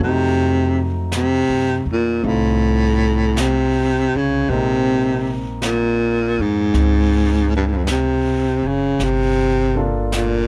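A slow 53 BPM swing in 4/4 carries this intimate, melancholic jazz ballad excerpt, moving through F7b9, Bbm11 and Gm7 harmonies. Up front, a breathy baritone saxophone sings the lead with a whispered, soft-edged tone, vibrato and scooped notes, while a woody, thumpy pizzicato upright bass and a warm concert grand piano sit back in the mix, and a brushed drum kit with snare and hi-hat joins at 1.1 s. The sound is close and detailed with very little reverb, giving the small group a dry, near-at-hand presence.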